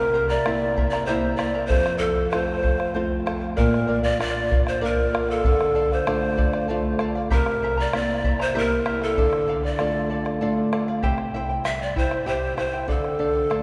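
This Andean folk piece for an Andean ensemble, cut from a longer work, moves in a three-beat metre with a wistful, earthy mood. Large cane pan pipes carry the melody up front, breathy and mellow with vibrato, a crisp chiff on each attack, rolled-off highs and an expressive touch. Underneath, a fingerpicked charango adds a shimmering layer from its double strings, some doubled at the octave, while a flamenco guitar, also fingerpicked and placed up front, gives a warm acoustic foundation. A round, close and dry bombo joins at 0.3 s, and the harmony wanders through C7, F, Bb and D minor before a brief new section arrives at 11.0 s, settling on C and then D minor. A wet church reverb with a long tail surrounds the ensemble, giving the performance the spacious air of a large hall.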